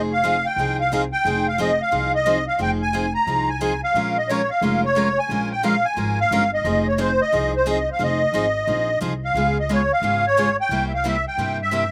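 A reedy, shimmering musette accordion carries the melody up front in this fiery, swinging burst of acoustic string swing in F minor at 178 BPM, its boxy tone sitting high above the band. A bright, picked steel-string acoustic guitar, also up front and marked by finger squeak, supplies the accompaniment with a slapback echo, while a woody, thumpy pizzicato upright bass anchors the low end through the Fm7, Bbm7, Db7 and C7 changes. The sound is dry and open-air, capturing the players outdoors, and the roughly 12-second cut is taken from a longer piece.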